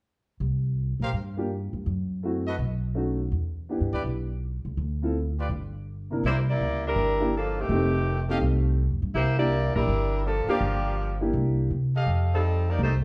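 A mellow, vintage saxophone section takes the up-front melody with vibrato from 6.3 seconds in this joyful, brassy big band swing excerpt, over clear, tight trumpet stabs, a slightly detuned, boxy upright piano comping, and a woody, thumpy pizzicato upright bass, all set back in a wet studio reverb.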